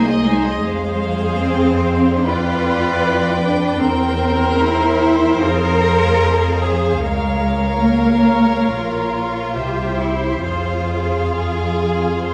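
An expressive cello section sings out most prominently in this yearning, elegiac excerpt of a slow romantic movement for string orchestra in F minor, moving at 65-79 BPM in 4/4 with a rubato feel. Above it, a lush, focused violin section carries the melody while a rich, more distant second violin line, a close viola accompaniment and a smooth, even double bass section placed up front fill out the bowed, vibrato-laden ensemble. The strings bloom in a wet recital-hall reverb, with the harmony moving from Ab/C and Fm through C7/E and Bbm before settling on C and returning to Fm at 10.4 seconds.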